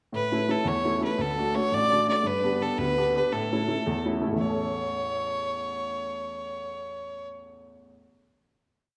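This Celtic folk jig in 6/8 at 113 BPM and in A mixolydian is a bright, lively whole piece. A single bowed fiddle, biting and intense with light vibrato, carries a motif-based melody in period phrases, while a woody upright piano with short sustain plays oompah bass notes and chord figures over A, D, G and back to A, both up front in a reverberant recital hall. The tune settles on a final chord from 4.4 seconds, with the fiddle stopping at 7.3 seconds and the piano ringing on to 8.0 seconds.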